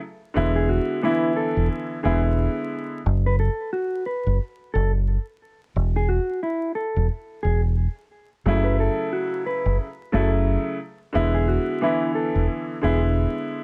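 Hip hop with a tough, reflective mood and a swung sixteenth-note feel, heard in a short passage cut from a longer piece. A dark, woody upright piano with a vintage, cassette-tinged character and plate reverb plays accompaniment, appearing at the start, dropping out at 3.0 seconds, and returning at 8.5 seconds. Underneath, a deep dub fingered electric bass holds a low register with a round, direct, amped tone that sits up front. A mellow, clean electric guitar carries the melody in a narrow upper range, its fingered lines sounding dark and close. Vinyl crackle and light reverb give the recording a dusty atmosphere, while the harmony moves from E7 through a chordless stretch to F#m7 and back to E7.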